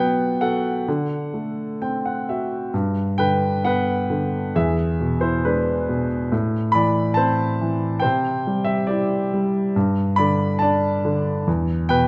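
Flowing in an unhurried rubato 4/4 at around 63-70 BPM, this tender, calm fragment of lyrical classical solo piano in G major, cut from a longer piece, features a warm, natural-sounding concert grand placed up front with a deep bass, adding a brief fill from 1.3 to 2.7 seconds before settling into a gentle passage through chords such as E7, Am and Em, all bathed in a moderate concert-hall reverb.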